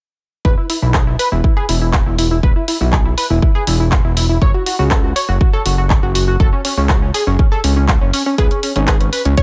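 A punchy, up-front electronic kick sets a straight 4/4 pulse at 121 BPM from 0.4 seconds, joined at 0.7 seconds by a layered house kit of handclaps and bright hi-hats. This short progressive house excerpt feels bittersweet and dreamy, built over chords that move from E5 to F#5 and on to C#5. A fat, detuned sawtooth analog bass sits low and up front, thick with a filter sweep and breathing with sidechain pumping. Above it, a tight, nasal sequenced synth drives arpeggios between C#4 and C#5, colored by chorus and delay and pumping with the sidechain. At 8.4 seconds a lush, detuned unison pluck adds a brief bright melody with delay in its final second. The mix is dry, with little reverb.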